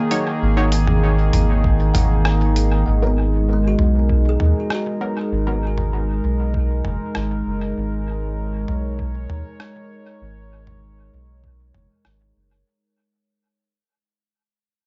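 A dry, dull-topped cassette home recording carries this deep, meditative ambient dub fragment, where a warbling, nostalgic sawtooth pad with chorus and built-in reverb sits up front with a round, soft sub bass, a muted, detuned dub chord stab with dub echo punctuates the opening, a compressed, pitched-down sampler kit of hi-hat, rim click and toms is later joined by a thumpy, muffled kick in the background, and a woody, hollow kalimba plays arpeggios through tape echo from 1.9 to 6.1 seconds while the recording fades out from 2.9 seconds.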